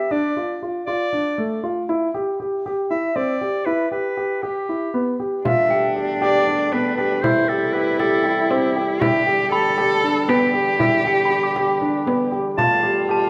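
In a moderate recital hall reverb, this restless, hypnotic piece of contemporary chamber music in 7/8 opens with a clear, classical-style solo clarinet carrying the melody over dark, mellow piano arpeggios with deep bass and short sustain, both up front. At 5.4 seconds a woody, bowed cello with vibrato adds a second line, joined by a French horn section holding smooth chords with light vibrato, a small, bright frame drum played with soft hands, and a bell-like glockenspiel with rubber mallets ringing in the background. The clarinet drops out at 8.9 seconds and returns briefly at 12.6 seconds.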